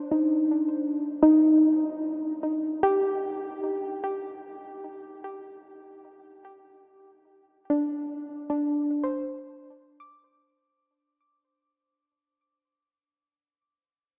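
A soft, round synth pluck carries this ambient excerpt entirely alone, sounding from 0.0 to 12.7 seconds across a range from D4 to D6. Its tone blends triangle, sine and sawtooth waves with a wave-folded edge, shaped by a filter into a fast attack that decays gently, and it sits up front in the mix with chorus and delay coloring each note. The piece floats in free time, peaceful and weightless, moving from an Ebmaj7/D chord at the start to G5 at 4.3 seconds. A huge, wet reverb with an 8.2-second tail surrounds the pluck, and the overall production is dark and warm. The music fades out between 6.5 and 10.7 seconds, and this passage is cut from a longer piece.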